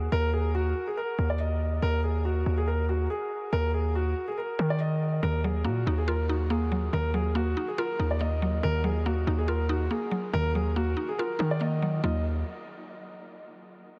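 This drill-style hip hop cut, lifted from a longer piece, moves with a half-time feel and carries a menacing, tense mood. A dark, mellow baby grand piano carries the melody up front, its long sustain stretched further by an analog delay. Beneath it, a heavy, aggressive 808-style bass sits just as close, its distorted sine tone laced with a noise layer and a fast attack that decays away. At 5.2 seconds a mallet-like synth pluck joins as accompaniment, woody and round with a short, percussive decay and a shimmer of chorus, as the harmony settles on an Ebmadd9 chord. The whole thing sits in a small room with light reverb, and the piano and pluck stop at 12.2 seconds while the bass carries on briefly to 12.4 seconds.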